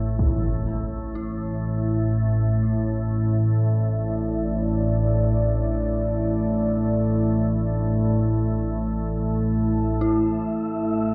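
In free time, this ominous dark ambient drone rests on a calm, detuned organ-like drone with ensemble chorus, while a deep, moody sawtooth pad with a sub octave fades in over its first 10.0 seconds through chorus and reverb, an eerie, inharmonic FM bell traces mellow arpeggios with chorus and diffuse delay in the background, and a breathy, wind-like tuned noise texture joins at 10.3 seconds, the whole excerpt sitting in a light room reverb.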